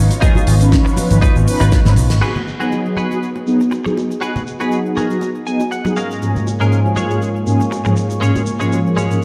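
Round, detuned synth brass sits up front throughout this groovy, sleek nu-disco cut, colored by chorus, phaser and delay, while a punchy slap bass and a layered electronic kick drive the opening until a drum fill at 1.7 seconds leads into the second section, where a lush, warbling, pumping pad with vintage 12-bit grit carries a filter sweep and a twangy, compressed clean guitar riff adds a fill at 5.2 seconds; all the while, a dry, damped 70s kit with dark cymbals and close bongos, cabasa and congas keep a swung groove under a moderate echo-chamber reverb.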